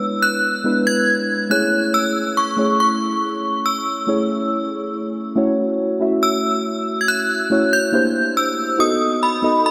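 In a straight 4/4 at 70 BPM, this moody, late-night R&B excerpt pairs dark, muted felt-like synth keys with chorus, moving through E7, Amaj7, F#m7, C9 and B7, beneath an inharmonic, ringing FM synth chime melody with ensemble chorus and delay, both parts up front in a dreamy mix soaked in a huge ambient reverb with a 4.2-second decay.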